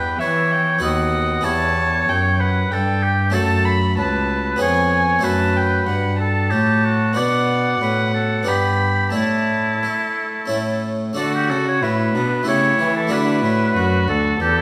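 A lilting triple-metre pulse, stretched freely with rubato, gives this baroque-style sonata movement a serene, dance-like sway. A clear oboe carries the melody with light vibrato and a soft attack, sounding distant and roomy, while a dark, nasal violin with gut-string tone traces a reedy second line behind it. Up front, an airy, brilliant French-style harpsichord plucks the accompaniment on octave strings, and a single close, rich cello, bowed in period style, anchors the bass. The harmony wanders through E minor, F-sharp minor and B minor, touching G and A along the way, before the opening section returns at 11.2 s and settles around D major until the fragment ends at 14.6 s. A moderate recital hall reverb gives this passage, cut from a longer piece, a gentle sense of space.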